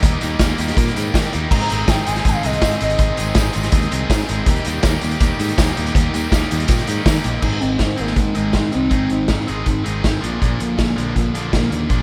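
Indie rock at 162 BPM in Ab lydian, upbeat and jangly, cut from a longer piece, with a biting overdriven guitar riff and a thick, bright fuzz guitar soaked in lush chorus, slapback and tape echo sitting in the background over a growly, punchy picked bass and an up-front vintage kit with dark cymbals and a pumping small-room sound. A close, dry tambourine jingles behind until 7.2 s, while a hollow, woody square-wave lead with vibrato, portamento, phaser and chorus sings its mellow melody at 1.5 s and again from 7.4 s. The chords move from Eb through Abadd9 before the second section shifts to Ab and Bb, all under light reverb.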